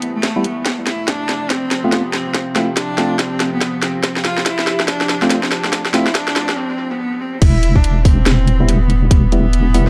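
A clear, bowed cello with vibrato carries a dub-echoed melody over a cavernous, heavy deep dubstep excerpt at 142 BPM in a half-time swing, joined by a resonant, phased drone, hollow chorused organ stabs, an overdriven garage kit with a cracking snare, a tight electronic kick from 0.2 seconds, and a dark wobbling bass that arrives on the drop at 7.4 seconds, all set in an echo-heavy mix with spring reverb.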